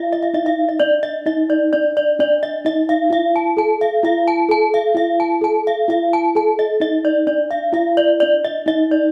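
Ceremonial and shimmering, this gamelan fragment cut from a longer piece moves at 130 BPM in a straight 4/4, with two bronze metallophones playing together up front in a wet stone room. One carries the melody with a mellow, soft tone from padded disc mallets and a boxy small-room character, while the other spins arpeggios an octave-register higher, struck with a horn mallet for a bright, ringing edge. Both instruments use paired tuning, giving their metallic notes a beating shimmer that lingers in the reverberant space from the opening moments through about 9 seconds.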